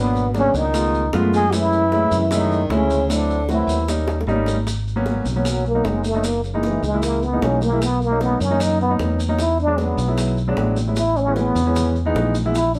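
Afro-Cuban jazz at 152 BPM in a straight 4/4, this sophisticated, sultry excerpt settles into G# minor from 4.7 s, with the band playing live together in one room under a moderate studio reverb. A plunger-muted trombone carries the melody up front, its clear, wah-wah tone colored by light vibrato, and from 4.7 s it takes a solo that runs to the end. Beneath it at the opening, a breathy tenor saxophone adds a whispered, intimate second line with soft attacks and scooped notes, sitting in the background until it stops at 3.9 s. A concert grand piano supplies accompaniment with deep bass and long sustain over rich extended chords, while a fingered electric bass sounds dark, round and direct up front. The percussion enters at 0.2 s: close, dry, low-tuned bongos in the background, distant high-tuned congas with a damped, thin-skinned snap kept very quiet, and grainy, band-limited maracas with a vintage feel. 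A drum fill just before the solo marks the turn into the second section.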